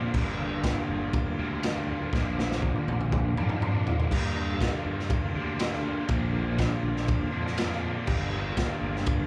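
A crunchy, saturated breakbeat drum kit sits up front with a tight kick and dark cymbals, rolling through a fill from 2.1 to 4.1 seconds. Very quiet, low-tuned congas add bright percussion until 4.1 seconds, while a round fuzz bass holds the bottom in the background. This dark, mysterious psychedelic rock passage, cut from a longer piece, pairs a double-tracked, overdriven guitar riff through a rotary speaker with faint, buzzy combo organ chords steeped in heavy vibrato, all cycling between Gm7 and Bb in a live-sounding large studio room.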